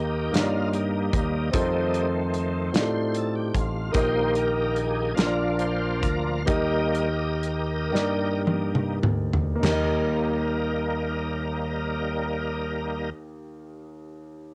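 A shouting, lightly overdriven tonewheel organ with key click, chorus vibrato and a slow rotary speaker leads from the start of this reverent, hopeful slow gospel excerpt in 6/8 and Eb major at 32-50 BPM, over an open concert grand piano with deep bass and long sustain and a bright, direct fingered electric bass, while a punchy acoustic drum kit with dark cymbals enters at 0.3 s, the music slows from 3.9 s, and a drum fill leads into a new section at 9.6 s, all heard as a home cassette recording with light reverb.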